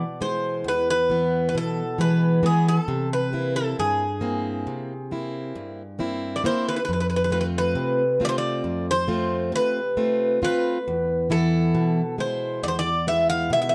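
A dark, warm production with a moderate studio reverb frames this wistful, melancholic excerpt of Greek folk music in a straight 9/8. A bright, metallic bouzouki carries the melody up front, its double strings and some octave-doubled courses ringing out, while a boxy, picked steel-string acoustic guitar sits equally close beneath it as accompaniment. Both play throughout, moving from E through C7 and F before settling back on E.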